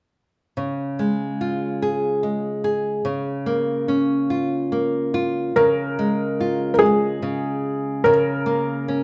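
A soft, felt-muted upright piano with a thin, short-sustained, intimate tone carries the melody up front from 5.6 s over a full-bodied, fingerpicked nylon-string guitar, whose classical accompaniment, finger squeaks and all, plays alone from 0.6 s in this innocent, sleepy children's lullaby at 48 BPM in 6/8, set in Db major pentatonic, moving between Db and Bbm/Db chords, wrapped in a moderate recital-hall reverb and cut from a longer piece.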